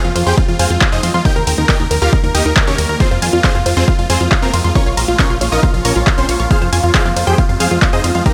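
Huge, detuned supersaw chords carry the melody up front through cassette-tape colour, delay and sidechain pumping in this bittersweet, euphoric uplifting trance excerpt in F minor at 137 BPM, over a plucky, wave-folded analog bass, two background unison plucks playing a high second line and delayed arpeggios, a very quiet shimmering granular pad, a punchy overdriven drum machine with handclaps, hi-hat and ride, and a dry, overdriven kick that enters at 0.4 seconds, as the chords move from Fm through Eb and Bbm.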